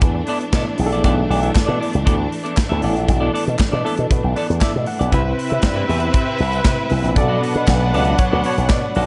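A punchy slap bass, bright and amped through an envelope filter, anchors this joyful, glamorous disco excerpt at 117 BPM in a straight 4/4. A polished, up-front drum kit with a punchy kick, medium-tuned snare and hi-hat sits in an airy small room with gated reverb, while a very quiet group handclap adds a hollow human touch from 0.5 s. A clean, fingered semi-hollow electric guitar with subtle chorus plays accompaniment alongside a reedy, barky electric piano, lightly overdriven with fast tremolo and placed in the background, which adds fills around 3.6 s and 7.7 s. A distant, clear string section holds lush bowed chords throughout, and from 5.1 s a smooth violin section with vibrato adds a second line above as the harmony moves from E7sus4 to Cmaj7 and Bm7. The whole mix carries a light reverb and a gently rounded top end.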